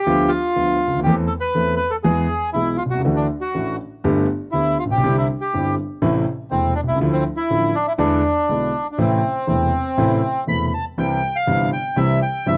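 A reedy, dark bandoneon opens this melancholic, dramatic tango fragment with the melody in a free, rubato 4/4, joined almost at once by an intimate concert grand piano whose deep bass and audible action noise carry the accompaniment through a minor-key progression that turns to a C chord near 11.0 seconds, both instruments up front in a dry, close, 1970s-style small-room sound.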